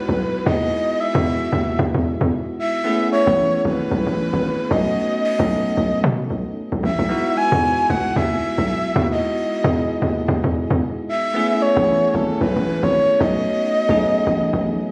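Caught on a phone in the room with light reverb and compression, this relaxed, warm amapiano excerpt at 113 BPM swings gently in E major, where a breathy, flute-like synth lead with chorus and delay floats up front over a clean, bell-like tine electric piano and a hollow, bouncy log drum bass, all three playing throughout the 14.9 seconds across a cycle of Emaj9, Amaj9 and B9 chords.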